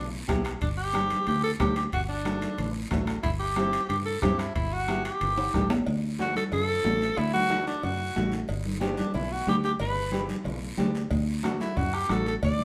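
A straight 4/4 cumbia groove at 183 BPM drives this festive, danceable latin clip, as a bright, gritty alto saxophone carries the vibrato-laced lead up front over a round, foam-muted fingered electric bass and a full-bodied, fingerpicked nylon-string guitar, while distant ringing congas, a close raspy guiro, background metal-shell timbales and cowbell, and a soft-beater bombo fill out the percussion, the bombo dropping out at 5.9 seconds after a drum fill and returning at 11.1 seconds, with the band captured live in one reverberant room as the harmony moves from E minor through G, D and C.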